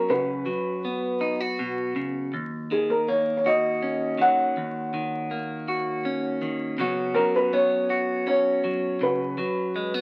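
A felt-muted upright piano carries the melody up front, its soft, mellow tone close and intimate with the audible clicks of its action, while a clean, picked electric guitar with a compressed, warm sound plays the accompaniment beneath it. This heartbroken acoustic folk-pop ballad in 3/4 moves gently through Db7sus4 and Ebm7 across its 10 seconds, a short cut from a longer piece. A wet studio reverb and the crackle of a very old 78 rpm record wrap the sound in a faded haze.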